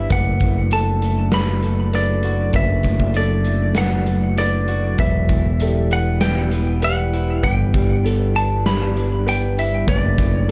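An up-front, overdriven picked bass drives this hopeful, euphoric post-rock excerpt, joined from 0.1 seconds by a punchy, big-room arena drum kit on kick, snare and hi-hat, while a clean hollow-body electric guitar carries the melody with tape echo over slightly broken-up lo-fi arpeggios from a second guitar through a small old amp, soft felt-muted upright piano arpeggios in the background, and a very quiet, ethereal detuned pad sustaining chords that move from D/F# through Em and G6, all in light reverb.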